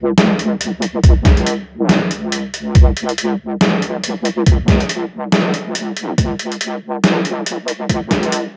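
Dark and cavernous, this brief deep dubstep excerpt moves at 140 BPM in a swung half-time feel, building up under a filter sweep across its 8.6 seconds. A heavy, detuned square-and-sine wobble bass with chorus and a high-pass filter sits up front from the start. A muffled, pitched-down trip hop sampler-style kit with overdriven hi-hat and snare enters at 0.2 seconds, joined at 1.0 seconds by a thumpy, compressed electronic kick drum that carries the loudest level, all in light reverb.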